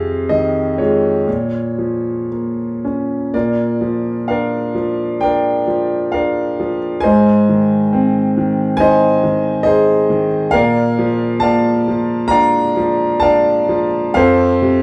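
A wet studio reverb wraps this recording, set back in the room, around an intimate, boxy concert grand whose deep bass and audible action noise come through plainly. This dark, wistful classical piece for solo piano moves in 4/4 with a lyrical, rubato feel, its notes ringing with long sustain. A brief opening phrase gives way at 3.3 s to a longer passage that runs until the piano stops at 14.8 s, in a fragment cut from a longer work.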